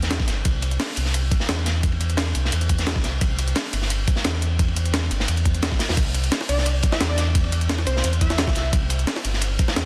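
Lush and dreamy, this short cut of liquid drum and bass at 174 BPM in C major rides an up-front, deep sine-and-triangle sub bass and a thumpy, gritty electronic kick alongside two breakbeat kits, one pitched-up and sampler-style, the other a crunchy, saturated acoustic kit with dark, rolled-off cymbals, while over a C to Cadd9 change a punchy, detuned sawtooth unison lead with a cassette-tape tint and dub echo slips in from 6.5 to 8.7 seconds, all pressed into a dense, heavily limited master with a light small-room reverb.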